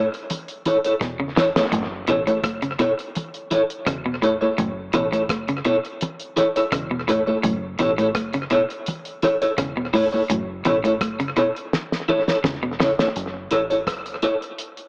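Meditative and serious, this roots reggae excerpt moves at 84 BPM in a straight 4/4, resting on an F#m7 chord in F# minor. One slightly broken-up electric guitar carries the accompaniment high and up front, its compressed, picked tone colored by tremolo and tape echo, while a second, brighter and twangy guitar plays arpeggios lower down and drops out at 12.9 seconds. Beneath them a deep dub fingered electric bass sits low and round, its foam-muted sound dark and direct. The cloth-damped drum kit is dry and thuddy, with a fat snare, tight kick, rim click and hi-hat under a rolled-off top and a touch of tape echo, and it plays fills at 1.0 and 11.7 seconds. High-tuned congas with a thin, damped skin add close percussion until 13.1 seconds, and the whole mix has a small-speaker sound in a moderate spring reverb.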